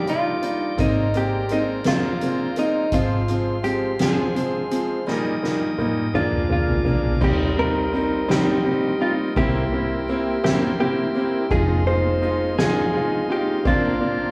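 A six-eight pop ballad in Eb major at a slow 56 BPM, this romantic, heartfelt passage is cut from a longer piece. A clean, compressed electric guitar carries the melody up front, its warm picked tone touched with spring reverb, while a bright grand piano plays accompaniment with a polished, present sound and audible action noise. Beneath them a reedy tonewheel organ holds sustained chords, a very quiet dreadnought acoustic guitar picks arpeggios, and a dark, round, foam-muted electric bass anchors the low end. A drum kit played with soft mallets adds dark cymbals, a fat snare and a boomy kick, with a fill from 5.1 to 7.2 seconds leading into the second section. The band sounds as if playing live together in a small room, and the harmony moves from Ebmaj7 through Fm7 to a closing Bbadd9.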